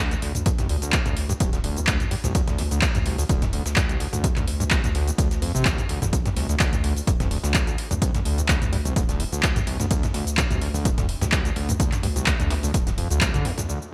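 Acid house at 127 BPM in D minor with a lightly swung 16th-note feel, this hypnotic, gritty fragment of a longer piece sits in a drop from start to finish over a D5 chord, with a punchy, tape-warm electronic kick driving it and an up-front analog drum machine adding metallic hats, cabasa, handclaps and toms through gated reverb. A squelchy, resonant square-wave acid bass riff with a filter pluck and fast attack is pushed through distortion, analog chorus, digital delay and sidechain pumping, while a deep, thick sine sub bass, also pumping, sits in the background. Far beneath, a very quiet, compressed sampler-style kit re-recorded in a large room supplies hi-hat and a medium-tuned snare, all within a bright 1980s-style digital production with light reverb.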